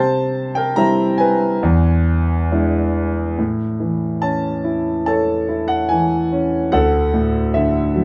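This is lyrical classical solo piano, a tender eight-second passage cut from a longer piece. A concert grand plays alone throughout in a flexible, rubato 4/4, spanning from D2 up to Bb5. Its tone is warm with a deep bass, a boxy body and long sustain, and it sits up front in the mix with a light reverb around it. The harmony moves from C to E7, then settles at 3.4 s into a new section on A before shifting to D at 6.7 s. The overall mood is tender and warm.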